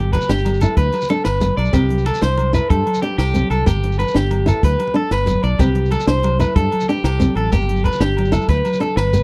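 Danceable and carefree, this short cut from a longer highlife guitar band piece moves in 12/8 over chords that alternate between G and C. Up front, a twangy, slightly broken-up electric guitar picks arpeggios through a tape echo, while a fingerpicked flamenco guitar adds acoustic accompaniment with audible finger squeak. The fingered electric bass sits prominently with a warm, direct-and-amped tone. A compact cocktail kit with a punchy kick, high-tuned snare and hi-hat keeps time beside a grainy, mellow shekere, while thick-skinned congas and ringing agogo bells sit in the background. The close 1970s-style studio sound is dry with a small room ambience, and a drum fill arrives at 9.0 seconds just before the cut.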